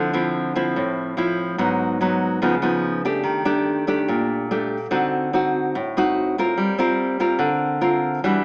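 Intimate and smooth, this brief bossa nova fragment, cut from a longer piece, features a lone nylon-string guitar played up front with a fingerpicked, classical touch and audible finger squeak. Its rich jazz harmony moves from Dm9 through chords like Ebmaj7#11 and D7b9 before settling on Gm7 near 6.6 seconds. The guitar sits in a lush large-studio reverb, while the overall sound has a small-speaker quality.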